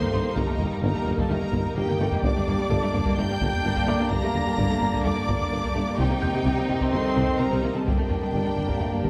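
Over a straight 4/4 pulse of heavy-stick taiko with a fill at 1.8 seconds, this brooding, tense hybrid orchestral and electronic film cue layers a lush, expressive violin melody and a smooth second violin line over distant violas, very quiet cellos, woody double basses and a solo tuba, with tight trombone and mellow French horn sections holding chords in the background beside an ethereal airy pad, a dark detuned pluck playing arpeggios and a felt-muted upright piano adding intimate texture until 7.9 seconds, all bathed in concert hall reverb as the chords move from Eb/G to Gm, Cm and back to Gm.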